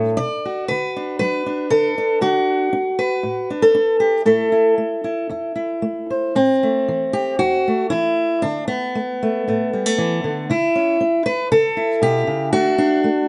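A fingerpicked steel-string acoustic guitar plays alone and up front, its warm, concert tone carrying audible finger squeak as it moves through a haunting, wistful folk phrase that runs from E2 to D5. The solo unfolds with a rubato feel around 117 BPM in 4/4, tuned to A4 = 445 Hz, stating its theme twice over chords that shift from Bm, D and A5 to Am, D5, A/C# and back to D. Light reverb and a rolled-off top end give this 13.3-second excerpt from a longer piece an intimate sound.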